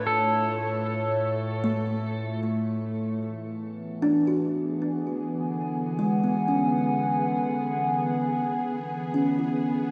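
A bright, twangy pedal steel guitar plays a short melody with slide and volume swells through shimmer reverb and delay, stopping at 2.4 s, over a warbling, nostalgic lo-fi pad of sustained chords, a woody, ringing kalimba playing arpeggios and a string-like drone with vibrato in the background, in a peaceful, serene ambient piece at 76 BPM that moves from Dm/A to Dmaj9 at 3.2 s, where a filter sweep begins on the pad, set in a wet concert hall reverb with a dark, warm production.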